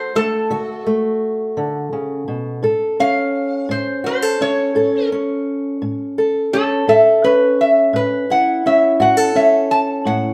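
A metal-body resonator slide guitar leads this short excerpt from a longer acoustic country blues piece, its fingerpicked slide lines sounding metallic and nasal as it carries the melody up front from start to finish. Beneath it, an old ladder-braced acoustic guitar, fingerpicked on aged strings, supplies the accompaniment with a dark, woody, boxy tone that also sits close in the mix. The mood is rollicking and gritty, with the two guitars rolling along in a straight 12/8 feel. The harmony moves from D to A at 2.6 seconds. The pair sounds like a duo playing live together in a stone room, whose moderate reverb gives the performance a natural, resonant space.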